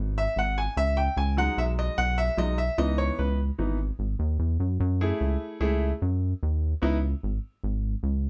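Heard through a light reverb, this brief cut from a longer piece puts both of its parts up front. It is a driving, brooding progressive instrumental in an uneven 5/4 metre with a straight feel. A bright grand piano carries the accompaniment with a brilliant, open tone and short sustain, taking a solo through the first 4.8 seconds over harmonies that move from a rootless C#m7 to B69 and C#m9. Beneath it, a rubbery square bass keeps a dark, hollow, bouncy line, its wave-folded tone shaped by a fast-attack filter pluck and a sustained tail. The harmony turns to F#m7 as the second section begins and then to C#5, and the piano drops out at 7.0 seconds, leaving the bass to carry on until 8.3 seconds.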